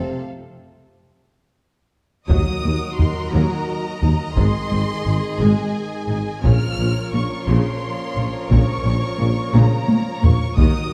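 A heroic, epic cinematic film-score excerpt in Bb minor opens with a lush violin section carrying the melody high above a clearer, more distant second violin line, while bright trombones and very quiet, mellow French horns hold sustained chords over a slow 6/8 pulse at 58 BPM. A drum fill from 1.3 seconds leads into the fuller passage at 2.3 seconds, where hard-stick taiko drums, rich background violas, and a deep bass of tuba, double basses and very quiet cellos join across Ebm, Ab and Bbm chords. Another taiko fill arrives at 9.5 seconds, all set in a dark production with moderate scoring-stage reverb.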